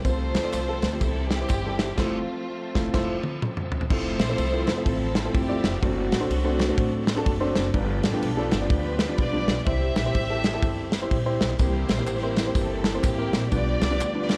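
A swung 4/4 groove at 125 BPM drives this reverent, jubilant slice of uptempo gospel in F major, cut from a longer piece. An up-front acoustic drum kit with a tight kick, medium-tuned snare and dark cymbals sits beside a woody, thumpy pizzicato upright bass on gut strings, while an intimate concert grand piano with deep bass, short sustain and audible action noise fills in the accompaniment. A bowed string section carries the melody, its soft attack, sul tasto tone and smooth top giving a close, warm ensemble sound. Underneath, a very quiet, lightly overdriven tonewheel organ holds full, shouting chords through a slow rotary speaker and chorus vibrato, stepping out briefly with a fill at 10.9 seconds. A band accent and drum fill lift the passage just before 3.9 seconds, and a background layer of tambourine, maracas and group handclaps appears only at the start and again from 11.6 seconds. 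The whole mix sits in a moderate recital-hall reverb and carries the worn, warbling pitch drift of old cassette tape.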